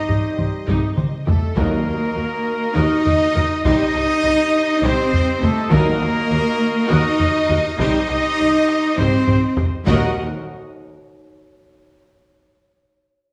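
A close, dry taiko ensemble struck with hard sticks drives this heroic, relentless cinematic orchestral cue in 7/8, with fills pushing into the phrases and the drums ringing on to 11.0 s. Mellow trumpet stabs sit prominently above a mellow French horn section holding chords in the background, joined by a tight, clear trombone section, a roomy woodwind section with soft attack, and a rich, close cello section alongside a studio double bass section on the bass. Distant, lush symphonic violins carry the melody in the background, shadowed by a very quiet second violin line and an airy, crisp flute ensemble with lifted highs, while a smooth-topped viola section fills in the accompaniment. Timpani with hard mallets land articulate hits in short bursts, first at 1.6 s, as the harmony swings between C minor and E-flat minor. A moderate scoring stage reverb gives the orchestra a sense of space in this passage cut from a longer piece.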